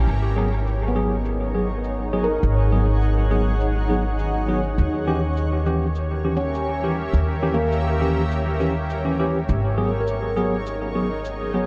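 A straight 4/4 pulse anchors this meditative, hazy slice of ambient dub, cut from a longer piece. Up front, a woody, thumpy pizzicato upright bass on gut strings carries the low end, while a tape-warm, electronic cabasa sits far back, muffled by low-pass filtering and trailed by dub echo from 0.1 s. A granular cloud pad holds blurred, evolving sustained chords bathed in its own built-in reverb, and a ringing nitrided-steel handpan plays band-limited arpeggios with sharp finger strokes, softened by a low-pass filter and dub echo. From 0.4 s a clean tine electric piano adds echoing stabs that sound as if heard through built-in speakers. The harmony drifts from G#m7 to D#7b9 at 4.8 s and back to G#m7, all within a light reverb that carries faint lossy compression artefacts.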